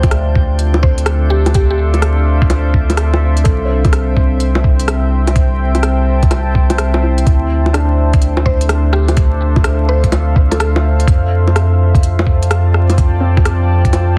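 A nocturnal, rainy mood hangs over this future garage excerpt, with a swung 4/4 groove and a dense, heavily limited master dusted with vinyl crackle. A muffled, thumpy electronic kick sits up front beside a deep, round sine sub bass that breathes with sidechain pumping, while an organic electronic kit adds bongos, crisp hi-hats, rim clicks and a softly clipped snare in a small room. A moody, warbling sawtooth pad holds dark sustained chords through chorus, built-in reverb and vintage 12-bit sampler grit, moving from Dm7 to Am7/C and later to F6. Beneath it, a felt-muted upright piano plays soft, intimate accompaniment in the background with tape echo, and a glassy texture of drifting overtones floats until 7.3 seconds. A woody, FM mallet-like synth pluck with chorus and analog delay offers brief melodic phrases, first at 0.8 seconds and again from 8.5 seconds.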